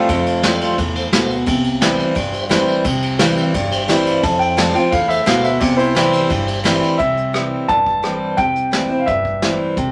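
A bright upright piano, brilliant and woody with audible action noise, carries the second line in this heartfelt, nostalgic honky-tonk and classic country excerpt at 174 BPM in C major, taking a solo from 7.0 seconds to the end. Up front beside it, a full-bodied picked dreadnought acoustic guitar on fresh strings moves between Fadd9 and C, while a soft brush drum kit with a punchy kick keeps time and a thumpy pizzicato upright bass sits in the background. A piping tonewheel organ with key click, slow rotary speaker and chorus vibrato adds fills in the background until it drops out at 7.0 seconds, all in a moderate club reverb.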